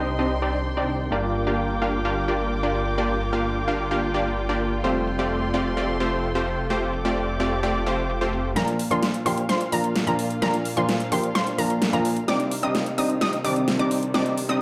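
A powerful, euphoric festival progressive house excerpt opens on a delayed concert grand piano with audible action noise, intimate sul tasto chamber strings, a bright, punchy supersaw stab riff through a low-pass filter and a thick, chorused detuned saw bass, soon joined by a big-room drum kit with a huge snare and metallic hats, before the bass stops at 8.5 s and a lush unison pluck arpeggio with delay enters at 8.6 s for a build-up carrying a drum fill and a filter sweep on the supersaw, set in a moderate digital room reverb.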